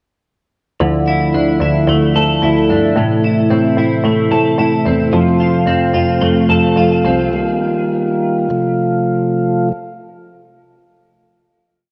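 Blissful and dreamy, this short dream pop piece in F major sways at 110 BPM in 4/4 with uneven beats. From 0.8 seconds, a soft, flute-like tonewheel organ holds sustained chords through a slow rotary speaker, its key click audible up front. A bright, twangy clean electric guitar shares the foreground with a fingerpicked roll of arpeggios, shimmering through analog chorus and tape echo. Beneath them, a single cello plays bowed sul tasto, giving a pure, floating bass line in steady eighth notes with a soft attack and smooth top. The harmony drifts from Dmadd9 through Am, F and Ebadd9 before settling back on F, and the tempo slows from 5.1 seconds. After the guitar stops at 7.9 seconds, the organ carries on alone to the close, all bathed in a moderate plate reverb.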